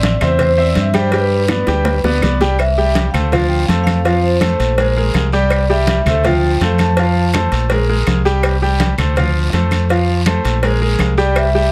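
A festive, joyful salsa excerpt at 164 BPM in C major opens on a ringing, metallic vibraphone melody over a bright, polished concert grand piano and a dark, round fingered electric bass placed up front. A raspy guiro runs throughout, while thin-skinned congas and soft, low-tuned cowbell and bongos sit in the background, with woody claves joining at 0.2 seconds and a drum fill from 1.5 to 2.6 seconds leading into the main section. Over chords moving from Am7 through Dm7, F and Bb13, the vibraphone drops out at 7.5 seconds and returns briefly near the end, all captured dry and close with crisp detail.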